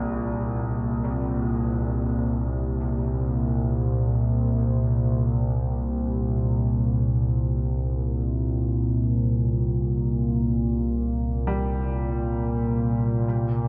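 Dark ambient drone in free time, this short cut from a longer piece feels vast and ominous. An analog drone sits up front from the start, its nasal, evolving sawtooth and pulse-wave tone shifting with pulse-width modulation, slow attacks, long releases and a chorus effect. Beneath it, a clear, worn grand piano plays low arpeggios between Bb1 and G3, much quieter than the drone and trailed by tape echo. A deep, moody analog pad with detuned square and triangle layers and a sub octave enters only at 13.2 seconds, barely audible, carrying sustained chords through chorus and phaser. The production is dark and warm, rolled off above 7.5 kHz and soaked in a huge ambient reverb with an 8.8-second tail, so the sound feels cavernous and heavy.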